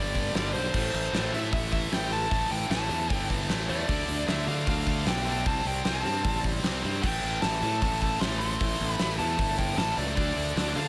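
A dark, smooth lead guitar opens this aggressive, driving hard rock excerpt at 0.0 seconds, its overdriven, picked melody ringing between C5 and C6 with a slapback echo. It arrives together with a heavy, double-tracked high-gain guitar riff, bright and distorted and placed up front, and a growly fuzz bass played with the fingers, overdriven and punchy. The gated 80s drum kit comes in at 0.2 seconds, with a fat snare, a punchy kick, bright cymbals on crash and hi-hat, and an airy, polished stone-room sound. The tune moves at 153 BPM in a straight 4/4 in A minor, passing through A5, Dm, C5 and Am before landing on D5 at 10.2 seconds. A small room ambience frames the band, and all four parts play on until the cut at 10.9 seconds.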